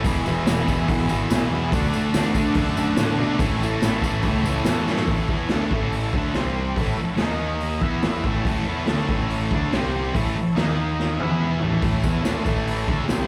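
A thick, double-tracked fuzz guitar riff and a boomy, gritty garage drum kit kick off this rowdy, swaggering excerpt of live garage rock at 142 BPM in A mixolydian. They are joined at once by a growling, overdriven picked bass, a buzzy vintage combo organ holding heavy-vibrato chords in the background, and a jingly tambourine that drops out at 4.9 seconds and returns at 12.0. A drum fill around 4.9 seconds punctuates the shift from E, D and A to a harder-edged run of C5, D#5 and E5 chords, the band captured through a club PA.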